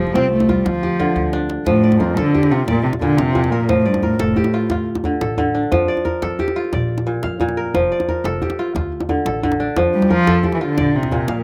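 A dark, nasal bowed cello carries the melody up front with vibrato and portamento, falling silent at 4.8 seconds and returning at 9.9, while a bright, ringing fingerpicked kora with slapback echo spins arpeggios, a pizzicato steel-string upright bass holds the low end and a close, hard-handed djembe plays a fill at 0.8 seconds, all in a flowing piece of West African traditional music in F major at 119 BPM in 12/8, recorded outdoors and cut from a longer work.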